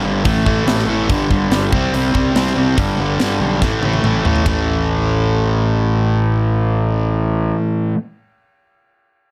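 Lightly reverberant, this swaggering, energetic hard rock clip sets a crunchy, bright overdriven guitar and a sludgy overdriven guitar up front playing a riff over chord changes, anchored by a growly fuzz-soaked fingered electric bass, while a tight, polished metal drum kit with bright cymbals, a high-tuned snare and a tight kick drives the first half before a fill at 3.6 seconds and drops out at 4.6 seconds, leaving guitars and bass to carry the next section.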